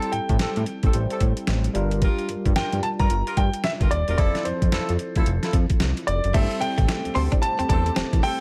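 A dry, close-sounding excerpt of slick, confident new jack swing at 111 BPM, with swung sixteenths and a gritty, pitched-down sampler-style drum kit up front, its thumpy kick, medium-tuned snare, hi-hat and crash treated with gated reverb. An intimate concert grand piano carries the melody with audible action noise and long sustain, over a bright, barky tine electric piano with phaser, distant jazz-style horn stabs, and a fat, detuned sawtooth bass moving through Am7, Gm7 and Fmaj7. At 6.3 seconds the harmony shifts to Am7/G as a smooth analog pad with lush chorus sits in the background and a clean, direct-recorded electric guitar plays a picked, compressed riff, also chorused.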